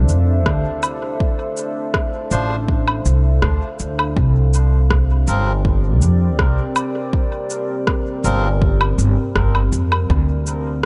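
A straight 4/4 pulse of dub-echoed electronic cabasa, rim click and woodblock, tape-tinged and re-recorded in a small room, rides over a deep, overdriven electronic kick in this meditative, hazy ambient dub fragment, where a growly, woody pizzicato upright bass stands up front beneath a moody, warbling sawtooth pad with chorus and a slow attack moving from Dm7 to C7sus4, while a reedy, breathy melodica adds echoing stabs from 2.3 to 8.5 seconds, set in a digital ambience.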